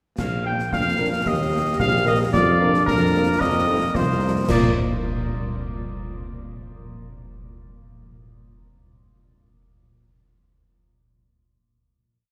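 Rousing and festive, this brief military-style wind-band march sets a roomy, distant cornet melody up front over a soft-attacked tuba holding bass on the beats, while a mellow French horn section with light vibrato adds after-beat and sustained chords and a warm euphonium weaves a counter-melody in the background, all above close, dry marching snare, bass drum on the beat and dark clash cymbals, in the long cathedral reverb of a church or concert hall before a final chord at 4.5 seconds.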